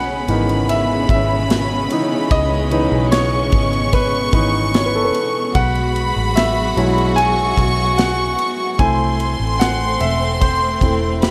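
Tender and hopeful, this short pop ballad excerpt in straight 4/4 features a warm, polished baby grand piano taking the solo over lush, smooth string-section chords, a floating, pure violin section drifting high in sul tasto as a second line, a dark, round, foam-muted fingered electric bass, and a punchy studio drum kit with bright ride cymbal and medium-tuned snare entering at 0.3 seconds, all set in a small room ambience as the harmony moves from C#m7 through Eadd9 to Am.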